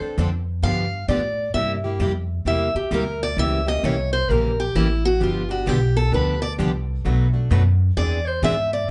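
A warm, concert-toned plugged-in steel-string acoustic guitar and a woody, thumpy, gut-strung upright bass open this lively, charming swung jazz manouche fragment, joined at 0.2 s by a bright, parlour-style picked steel-string acoustic guitar in accompaniment and at 0.6 s by a boxy, up-front picked steel-string acoustic guitar carrying the solo melody through plate reverb, with finger squeak audible on all three guitars over changes running from Dm7 through C#dim7 to Eaug7, all set back in a wet club room.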